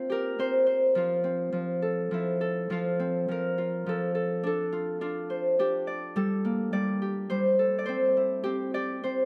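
A sleepy, tender children's lullaby in three, carried by a solo Celtic harp whose bright, fingerpicked notes ring up front through close, detailed microphones and light reverb, moving through gentle chords in a brief fragment cut from a longer piece.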